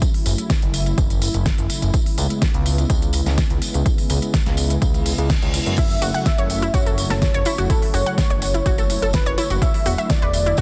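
A warm, velvety synth lead with vibrato enters at 5.8 s, singing through chorus, cassette-tape colour and digital delay over a dreamy, bittersweet progressive house groove at 125 BPM in F# minor, joined by a bright detuned analog pluck playing arpeggios. Underneath, a lush, warbling unison pad holds sustained chords and a fat, detuned sawtooth bass sits up front, both pumping against a punchy electronic kick, while a layered kit adds a fat snare, crisp hats and crash, and a close, jingly tambourine rides along. A reverse cymbal rises into the lead's entrance, and the chords move from F#m7 to C#m7 and back, landing on E9sus4 at 9.6 s, all in a dense, heavily limited modern mix with digital ambience.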